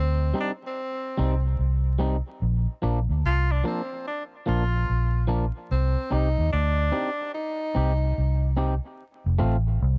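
Roots reggae at a relaxed 73 BPM in 4/4, with a gentle swing on the sixteenths, this short cut from a longer piece feels laid-back and sunny. A dark, round, foam-muted electric bass sits up front and carries the low end from the start to 10.0 seconds, standing as the loudest part. A clear tenor saxophone takes the melody in a narrow span around C4 to F4, its subtone, light vibrato, scooped notes and smooth top giving a pop-style solo voice bathed in dub echo until 8.5 seconds. An electric guitar at the edge of break-up supplies accompaniment from 0.3 seconds, sounding twangy, compressed and slightly broken-up, with its own dub echo trailing behind. The harmony moves through Cm and Bb before returning to Cm and landing on F at 9.0 seconds. The sound is dry and close, like a 1970s studio session, with little reverb and a layer of vinyl crackle.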